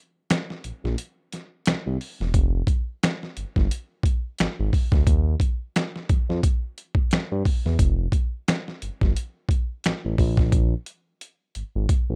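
A dusty, sampler-style drum kit opens this introspective neo-soul and R&B excerpt at 0.3 s, with finger snaps, hi-hat, a thumpy kick and a medium-tuned snare sitting up front in a gritty, overdriven, compressed sound. A smooth synth bass joins at 0.6 s, blending sawtooth and triangle tones with ring modulation, a fast attack, sustained notes and vibrato that give it a mellow, soulful body. The groove moves at an unhurried pace with a light swing on the sixteenths, and the opening stretch up to 2.3 s serves as a break. A drum fill arrives from 10.5 s and carries through to the end. The mix is dry and close, with the rough, homespun character of a demo, and the passage is cut from a longer piece.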